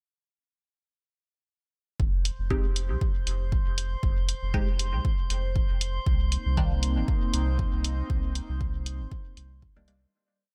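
A swung pulse of punchy four-on-the-floor electronic kick and programmed closed hi-hat, both up front with a small-room tone, drives this nocturnal, hypnotic dub techno piece, joined by a round, pumping sine sub bass in a dotted rhythm, sparse muted sawtooth chord stabs soaked in phaser and dub echo, a glassy held high note drifting through chorus and reverb, and an airy, breathy pad that enters at 6.1 seconds before the fade-out from 7.4 seconds.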